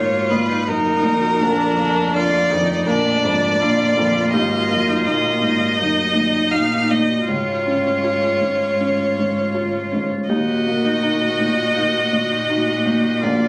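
A focused, vibrato-laden single violin sings a fragile, longing melody up front in this rubato neoclassical piano-and-strings excerpt, over a rich bowed cello second line, a smooth, clear viola, a soft felt-muted upright piano with short sustain, and a ringing fingerpicked Celtic harp with slapback echo in the background, all caught on a phone in a room with light reverb and club ambience.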